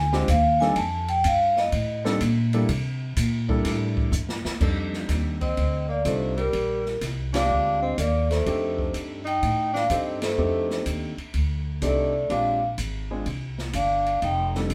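Warm and sophisticated, this small-group jazz piece swings in 4/4 at 125 BPM in F mixolydian, a short cut from a longer performance by a band playing together in one room with a wet studio reverb. A metallic, ringing vibraphone played with medium mallets and the motor off carries the melody, sounding at the very start, resting briefly, then returning at 5.4 seconds, and the opening stretch is billed as a vibraphone solo capped by a drum fill just before 4.6 seconds. The woody pizzicato upright bass, with steel strings and sitting up front, runs the full length, while an intimate grand piano with audible action noise and long sustain supplies accompaniment over rich Bb13, F13 and C13 harmonies. The open jazz kit sounds natural and small-roomed, with dark cymbals, a medium-tuned snare and a boomy kick across crash, hi-hat, ride, snare and kick. From 5.4 seconds a breathy tenor saxophone adds a second line with vibrato, soft attacks and scooped notes, and the band hits accents at 7.3 and 10.1 seconds.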